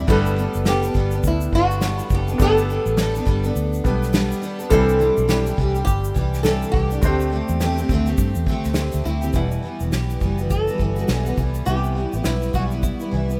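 An easy-going, heartfelt acoustic pop clip with a gentle sixteenth-note swing, cut from a longer piece and captured as a rough home demo with light reverb and a small room ambience. A fingerpicked flamenco guitar carries the melody in a narrow upper range, its tape echo and audible finger squeaks giving the lead an intimate, handmade character. Underneath, a full-bodied, double-tracked jumbo steel-string acoustic guitar is picked up front, while a clear, polished concert grand piano with short sustain adds accompaniment until it drops out at 9.4 seconds. A dark, foam-muted vintage electric bass sits round and forward, and an unplugged drum kit played with bundle sticks brings a punchy kick, medium-tuned snare, shaker and crash cymbal, with a grainy egg shaker tucked very quietly close by. The harmony moves through airy added-ninth and suspended chords before shifting at 9.3 seconds into a minor-leaning passage that moves on to a Cmaj7.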